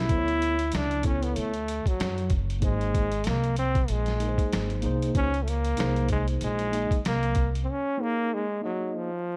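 Smooth and warm, this jazz-hop excerpt moves at 95 BPM with a swung 16th feel, as a brilliant, punchy trombone takes the solo melody up front with forceful, scooped notes over a mellow, clean tine electric piano heard through its built-in speakers. A woody pizzicato upright bass and a gritty, compressed, pitched-down boom bap sampler-style kit, with a thumpy kick, medium-tuned snare and hi-hat set in a large room, carry the groove through Dmaj9, Abadd9 and Db5 under a haze of vinyl crackle. At 7.7 seconds the bass and drums drop out for a break, leaving the electric piano to continue until 9.1 seconds and the trombone until 9.4 seconds.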